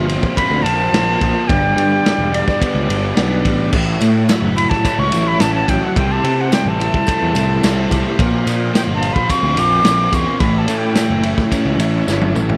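A straight 4/4 pulse at 108 BPM drives this hazy, hypnotic psychedelic rock fragment, where a breathy, bright flute carries the melody through tape echo until 11.3 seconds over a buzzy combo organ's sustained chords in spring reverb, a double-tracked overdriven guitar riff through a rotary speaker, a punchy fuzz bass up front, a vintage drum kit with a rolled-off top that closes on a fill at 12.1 seconds, and a jingly tambourine entering in the background at 3.7 seconds, all moving through chords from Bbsus2 and G to A6 and C6 in a small room.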